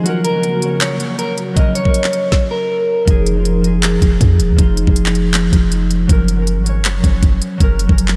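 A half-time trap beat at 159 BPM in 4/4 drives this dark, menacing hip hop piece in F phrygian: an electronic kit with knocking kick, woody snare, crisp hi-hats and handclaps, carrying vintage 12-bit sampler grit up front. Over ringing, fingerpicked concert harp, a slightly broken-up electric guitar plays a brief melody through lush chorus, analog delay and a low-pass filter, while an airy, breathy detuned pad holds chords; both drop away before a deep, boomy 808-style bass enters at 3.1 s as the harmony moves from Gb to Fm7 and back. The dreamy mix is soaked in a huge ambient reverb.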